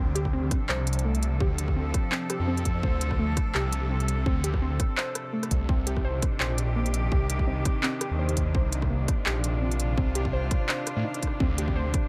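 A thick, swirling detuned saw bass with a phaser sits up front, holding the low end from Bb1 to A2 through this dark, spacious cut of half-time drum and bass at 168 BPM in C dorian. An industrial kit of handclaps, crisp hi-hats and rim clicks enters at 0.2 seconds, joined by a hard-clipped electronic kick at 0.3 seconds. The kit sounds re-recorded in a small room, and both drum parts are tape-warm and close, with a 55% swing on the sixteenths. Above them a studio cello section holds rich, earthy, bowed chords with light vibrato and a biting edge, its sustain pumping with the sidechain. A warbling, lo-fi pluck plays arpeggios through chorus and tape echo, its vintage tone decaying under a filter sweep. The harmony moves from Dm7 to Cmadd9 at 5.7 seconds and back to Dm7 at 11.4 seconds, all set in a digital ambience.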